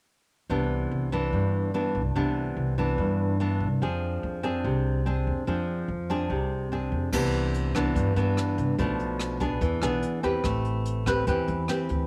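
Light reverb and small room ambience surround this romantic, sophisticated bossa nova excerpt, where an up-front, fingerpicked nylon-string guitar moves from Cmaj9 to Fm6 over a woody, thumpy pizzicato upright bass with gut strings, until an airy brushed jazz kit with dark cymbals, boomy kick, hi-hat and rim click enters at 7.1 s as the harmony returns to Cmaj9 and turns through Bm7b5 and E7 to Am9.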